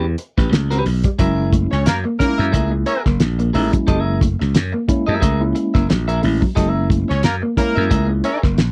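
This dry, close recording has the character of a 1970s studio, with little reverb around a gritty, funky groove cut from a longer piece. Up front, a cloth-damped drum kit thuds with a fat snare, tight kick and hi-hat, its muffled, saturated sound rolled off at the top, while a bright, growly slap bass punches alongside it. A clean, picked electric guitar plays accompaniment with subtle chorus, and a dark, fingered second guitar sits in the background with a low riff. From 1.2 s a tine electric piano adds mellow stabs through its built-in speakers, and a smooth-topped horn section, doubled in octaves, comes forward with a second line at 1.7 s and again at 7.1 s. The harmony moves from A9 to F#9 over a lightly swung sixteenth-note feel.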